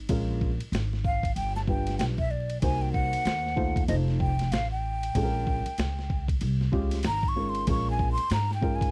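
A dry, close recording with a 1970s studio character and a layer of vinyl crackle frames this short cut from a longer jazz-hop piece. It feels nocturnal and cool, moving at 95 BPM in 4/4 with a swung sixteenth-note feel in Bb dorian. A sampler-style boom bap kit sits up front, compressed, gritty and pitched down, its thumpy kick and high-tuned snare joined by hi-hat and ride cymbal. An upright bass plucked pizzicato on steel strings gives a woody, warm low end from the very start, while a dark concert grand piano accompanies with a mellow, vintage tone, deep bass and short sustain. At 1.1 seconds a breathy, hollow metal jazz flute enters up front with vibrato, a soft attack and lifted highs, carrying the solo melody through to 8.9 seconds as the harmony moves from Bbm7 through G7, Cm7b5 and F7 and back to Bbm7.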